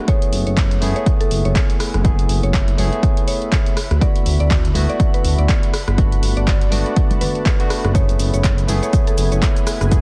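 A swung 4/4 groove at 122 BPM drives this moody, hypnotic deep house piece in F# minor, with an overdriven, up-front electronic kick, a punchy analog drum machine supplying handclaps, hi-hat, rim click and shaker, and thin-skinned congas in the background from 0.8 to 8.8 seconds, while a smooth sawtooth synth bass and bright, barky tine electric piano stabs pump with sidechain, a woody FM mallet-like pluck carries the melody through chorus and dub echo, and a dark, detuned analog pad enters at 1.4 seconds with slow-attack, sidechain-pumped chords moving from F#m11 through D6 and Gmaj9, all set in a digital ambience with a dense, heavily limited master.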